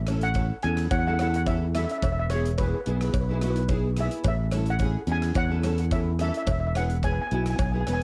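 A home cassette recording with light reverb and a touch of studio ambience gives this short, carefree calypso excerpt its sunny, easygoing glow. A shimmering lead steel pan, struck with medium rubber sticks and sitting mid-forward, carries the melody through a tape echo. Beneath it, a bright, direct fingered electric bass stands up front as the most prominent part, while a double-tracked nylon-string guitar with a full-bodied, deep classical tone is fingerpicked with audible finger squeak and a cassette-tape colour. A gated 80s drum kit adds a punchy kick, hi-hat and rim click with a big, airy, polished room sound, and a close, dry cowbell sits in the background. The harmony moves simply between A and E over a straight 4/4 feel for the full 8 seconds.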